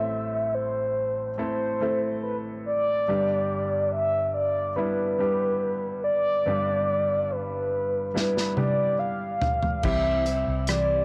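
This hopeful, heartfelt pop ballad excerpt at 71 BPM opens with a mellow, horn-like sawtooth synth lead singing the melody up front, its soft attack and sustained notes colored by chorus, vibrato and cassette tape, over a clear, polished baby grand piano moving from A minor to G. At 8.2 seconds an unplugged acoustic drum kit enters with a fill, airy and close in a small room, with dark cymbals, a medium-tuned snare, a punchy kick, bundle sticks and its own cassette-tape tint. At 9.8 seconds the harmony lands on C as a dark, amped, foam-muted vintage fingered bass and a full-bodied picked dreadnought guitar arpeggiating in the background, finger squeak and all, join under a moderate spring reverb with a homemade cassette character.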